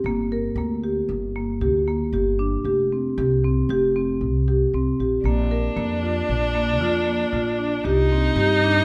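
A woody, thumpy pizzicato upright bass opens this playful, restless piece of contemporary chamber music at 0.0 seconds. At 0.1 seconds a dark, smooth marimba with medium hard mallets joins with up-front arpeggios, moving through Gm, Fsus2, Bb and Cmadd9 in an uneven 5/4 at 115 BPM in Bb major. A single bowed viola enters at 5.2 seconds with a rich, focused second line colored by vibrato, and light reverb surrounds this short excerpt cut from a longer piece.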